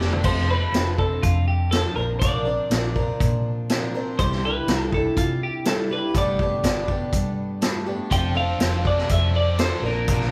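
This short excerpt has the sound of a band playing live together in one large studio room, with a moderate reverb. It's jangly, open-road folk rock and heartland rock at 122 BPM in a straight 4/4. A drum fill on the vintage kit kicks things off, and the kit sits up front with a punchy kick, a medium-tuned snare and dark cymbals. Under it, a round, hollow-body short-scale bass gives a dark, amped low end, while a picked twelve-string acoustic guitar shimmers through the chords F6, Bbadd9, Cadd9 and Gadd9. From 0.3 seconds a clean, compressed twelve-string electric guitar carries a twangy melody. A biting, double-tracked overdriven guitar riff appears briefly at the very start and returns at 8.1 seconds as the progression comes back around to F6.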